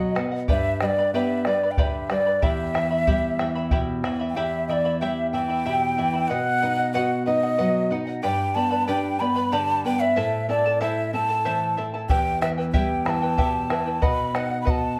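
A breathy, mellow cane quena leads this festive yet wistful Andean folk piece, close-miked and up front, its tongued, hollow tone carrying a gentle vibrato through the melody in a straight 6/8. Beneath it, a charango's doubled strings shimmer in fingerpicked accompaniment, some courses ringing in octaves. A classical nylon-string guitar, also fingerpicked and forward in the blend, adds a warm lower foundation, with finger squeaks audible on the strings. A deep, dark bombo sits close, dropping out at 4.2 seconds and returning at 12.1 seconds. The harmony moves through G, E minor, B and A minor as the opening phrase is repeated, and the band plays together live in one room, wrapped in a wet, large studio reverb, in a passage cut from a longer performance.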